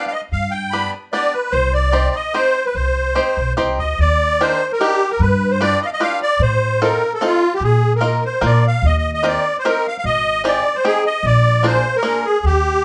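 This excerpt is a whirling, bittersweet musette waltz in three, opening with a reedy, shimmering accordion carrying the melody over a twangy, percussive banjo played with fingerpicks, with a woody pizzicato upright bass entering at 0.3 s. All three sit up front in a moderate studio room, the band playing live together, as the harmony turns from minor toward a brighter major colour at 4.0 s. The banjo drops out at 12.2 s while the accordion and bass carry on to the cut.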